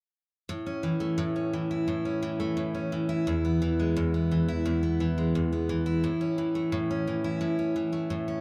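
Moderate studio reverb gives this short clip from a longer pop piece a natural room, with a single picked steel-string acoustic guitar placed up front. The mood is heartfelt and carefree, set at 87 BPM in 4/4 with a straight feel in A major. The guitar plays accompaniment from 0.5 to 8.4 seconds, spanning E2 to E4. Its jumbo body gives the tone a full-bodied, warm character. The harmony moves from A to E at 3.3 seconds and settles back on A at 6.0 seconds.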